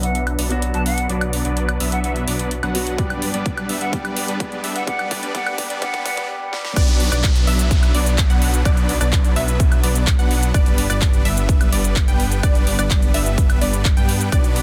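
A hollow, pure-toned flute with vibrato carries the melody from the start, set in the background with a gritty 12-bit sampler texture and dub echo, over a warm concert grand piano and a bright, airy supersaw chord riff whose low-pass filter sweeps through the build-up. This is euphoric, anthemic festival progressive house in B minor at 127 BPM, with a thick, dark detuned saw bass under chorus and sidechain pumping, and a big-room dance kit with a huge snare, metallic hats, handclaps, shaker, woodblock and crash. A punchy, tape-warm electronic kick enters up front at 3.0 seconds as a drum fill drives the build, while a very quiet riser and downlifter sweep through the middle of the passage. After a short break, the drop lands at 6.8 seconds, where a lush, wave-folded unison pluck enters with decaying arpeggios sitting in the background, soaked in dub echo and pumping with the sidechain. 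The chords move between Bm and G, and the master is dense and heavily limited with a light reverb, cut from a longer piece.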